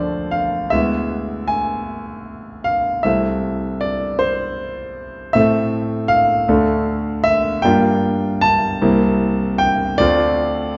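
A solo concert grand piano opens this brief romantic nocturne fragment, its clear, smooth tone sitting up front with a deep bass and short sustain that gives it a slightly vintage character. Played in a gently rubato 6/8 feel, the tender, serene harmony drifts from Dm through Am and Gm7 to settle on Dm7 at 10.0 seconds. A wet recital hall reverb and a dark, warm production surround the piano, and the passage ends as if cut from a longer piece.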